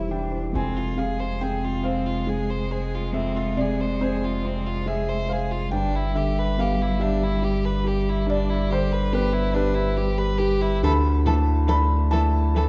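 Hopeful and intimate, this neoclassical piano-and-strings fragment drifts in a rubato 6/8 at 47 BPM, where a soft, felt-muted upright piano sits up front beside a deep, punchy sine sub bass with a pitch-drop attack, while a clear solo violin carries the melody from 0.5 seconds with vibrato and a rich, bowed cello traces a second line in the background, all in the moderate glow of a scoring-stage reverb over chords moving from C/E through Fm and G6 to Dsus2.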